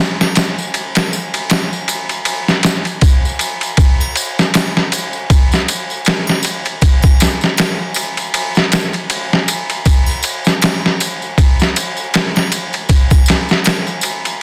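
A gritty, pitched-down sampler-style kit of thumpy kick, medium-tuned snare and ride cymbal sits up front with overdrive and studio reverb, while ringing triangle and tambourine played with hard hands stay in the background, giving this cinematic, melancholic trip hop fragment a swung 4/4 sway under a dense, heavily limited master.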